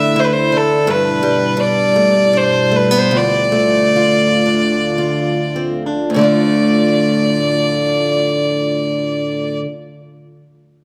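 A moderate concert-hall reverb gives this short portion of a longer Celtic slow air a spacious, mournful glow. Set in D dorian and a rubato 3/4 that moves between 50 and 86 BPM, the music slows down from 0.9 to 6.1 seconds before a new section begins. A single bowed fiddle carries the longing melody up front, with a biting, earthy tone and light vibrato that still sounds somewhat distant. Beside it, a picked acoustic archtop guitar plays a bright, boxy accompaniment through Dsus2, G6 and Dm. Beneath both, a quieter warbling pad holds dark, nostalgic sustained chords with a lo-fi, detuned chorus sheen.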